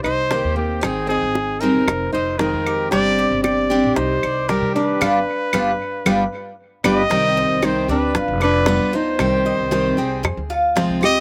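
Dry and close with an open-air feel, this nostalgic slice of Cuban son and guajira at 115 BPM in 4/4 sets a warm, up-front trumpet melody with light vibrato and slapback echo over a fingerpicked nylon-string guitar second line that carries the same echo and a little finger squeak, along with metallic double-string tres arpeggios, a dark, thumpy gut-string upright bass and woody claves in the background, while a bright, picked steel-string acoustic guitar and tight, high-tuned bongos join at 0.3 s, the band hits an accent from 5.0 s to 7.1 s, and the harmony turns to C harmonic minor from 7.1 s.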